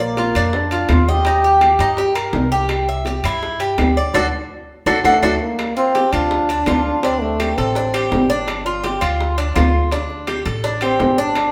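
A punchy trombone with vibrato opens this danceable, sultry Cuban son excerpt, sitting up front beside the picked, metallic double strings of the tres, over a thumpy, gut-strung pizzicato upright bass. Ringing metal-shell timbales, tight high-tuned bongos and woody, distant claves join moments later, with the bongos and timbales carrying a compressed, saturated edge. The trombone's solo lines come in short phrases and return at 5.1 s, while a band accent and drum fill push the group into its second section at 5.6 s, all played live together in a large studio with a lush reverb.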